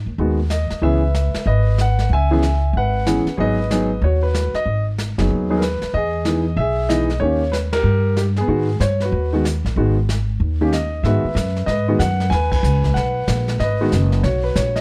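Dark, softly reverberant production frames this smoky, late-night jazz piano trio excerpt in G# minor, swinging at 188 BPM in 4/4, with the whole band hitting accents at 7.7 and 12.5 seconds. A woody, thumpy pizzicato upright bass sits up front from the very start, joined a moment later by a clear, natural concert grand carrying the melody over G#m7, C#m7, Emaj7 and D#7 changes. Further back, a brushed drum kit adds dark cymbals, a medium-tuned snare and a boomy kick.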